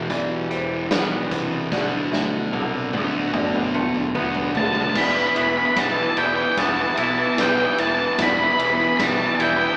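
Twangy clean guitar arpeggios, a sludgy overdriven riff guitar and fuzzy electric bass open this cinematic, cathartic post-rock passage over a huge arena drum kit with a punchy kick, while a glassy, ethereal FM pad and a mellow felt-muted upright piano sit far behind, until a dark octave-fuzz lead guitar melody surges up front at 4.6 seconds and a bright hollow-body guitar riff replaces the sludgy one at 5.0 seconds as the band builds, all in a reverberant live room with an AM radio tint.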